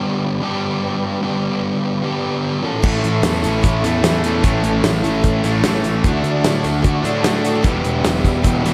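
Driving and gritty, this classic rock fragment opens with a sludgy, overdriven guitar riff up front over very quiet, dark tonewheel organ chords with key click and a slow rotary speaker. At 2.8 s the rest of the band enters: a bright distorted electric guitar riff, a punchy fuzz bass, a dry, damped 70s drum kit with a tight kick and crash cymbal, a boxy picked acoustic archtop guitar with finger squeak in the background, and a faint, jingly tambourine. The chords move from G to A, D and E minor, and the whole mix has a big arena sound with concert hall reverb.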